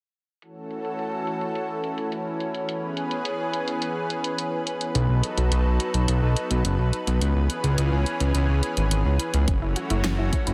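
A lush, detuned sawtooth pad in unison holds sustained chords from the opening of this driving, nostalgic synthwave excerpt, its slow attack and long release softened by chorus and pulsed by sidechain pumping, while a filter sweep moves across it until 9.5 seconds. Underneath, a pop drum kit of hi-hat and fat snare, low-pass filtered and re-recorded in a small room, keeps a straight 4/4 at 106 BPM through a progression of F#m7, C#m7, B7 and C#m7. At 5.0 seconds a fat, saturated analog bass enters up front, thick and sawtooth-based with a fast attack, its tube-driven tone also pumping against the sidechain. At 9.5 seconds a new section arrives with a punchy electronic kick and a bright, warbling unison pluck playing delayed arpeggios with a vintage, noisy edge as the harmony returns to F#m7. A light digital reverb lends the mix a gentle sense of space.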